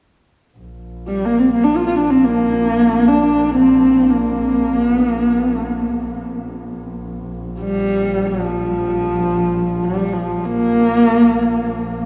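Proud and galloping in mood, this Mongolian folk passage, cut from a longer piece, moves in free time in a Bb gong mode. A muted double bass, bowed con sordino by one player, enters at 0.6 seconds and holds a veiled, low drone on Bb1, sitting quietly beneath the melody with its own vibrato and portamento. At 1.1 seconds a single bowed horsehead fiddle takes the melody between F3 and F4, its horsehair strings giving a dark, husky voice placed up front in the mix. The fiddle line is expressive, shaped with vibrato and gliding portamento, and it closes at 11.8 seconds just before the bass drone ends. A cathedral reverb with a long 6.6-second tail surrounds the performance, recorded in a church or concert hall with a small room ambience.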